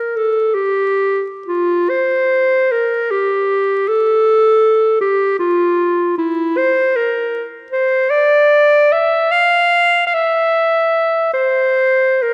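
A single clarinet opens at once and plays alone throughout this brief cut from a longer classical piece, its clear, present tone placed up front. The mood is lyrical and nostalgic, set in F major and 6/8 at a slow 51 dotted-quarter beats per minute, with uneven beats and rubato that give the line a free, expressive feel. The melody moves within a range from E4 to F5, sung out in a classical style. A moderate concert hall reverb, lasting about 2.0 seconds, lends the solo an airy sense of space, while a vinyl crackle sits beneath it. The passage ends at 12.3 seconds as part of a larger work.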